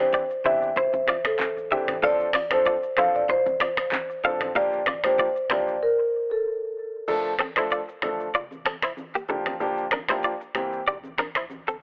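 A lightly swung sixteenth-note afrobeats groove from an electronic, overdriven drum kit with a deep kick and metallic hats drives this mellow, smooth fragment, where a medium-mallet marimba carries the melody through analog delay until 6.4 seconds, a polished grand piano supplies chords, a bright, twangy, direct-recorded clean electric guitar plays a compressed picked riff, soft-handed vintage congas sit in the background with a punchy sine sub bass, and the whole dry, gritty mix has a telephone-like tone and a break at 5.8 seconds.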